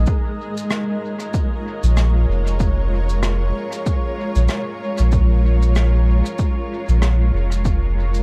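A loping 4/4 groove with a gentle sixteenth-note swing carries this brief ambient dub excerpt, its meditative, hazy mood resting on a single Bbm7 chord. An up-front electronic kick, layered and punchy with overdrive, drives the pulse from 0.1 seconds until 7.8 seconds. Alongside it, a much quieter shaker and rim click, played with brushes in a small room, carry a dub echo. Beneath them, a soft, round sub bass built from triangle and square waves holds deep, sustained notes up front, each with a fast attack. Floating well behind is a granular cloud pad of detuned sine and sawtooth voices in unison, blurred and evolving, with a slow attack, a long release and its own built-in reverb lending a bright, cloudy sheen. The overall sound is dry, with little room around it.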